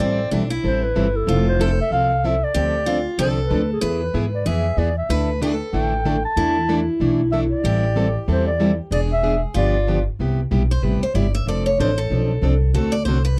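A breathy, whispered clarinet carries the melody with vibrato, scooped notes and a soft, intimate subtone in this playful, swinging acoustic gypsy-jazz excerpt at 188 BPM in A minor. A bright, boxy parlour steel-string guitar plays a second line beneath it, while a plugged-in steel-string guitar picks warm, up-front accompaniment over a woody, thumpy pizzicato upright bass with gut strings. When the clarinet stops at 10.0 seconds, the music moves to C major and the bright guitar takes a solo from 10.2 seconds, all captured in a dry, close 1970s-style studio sound.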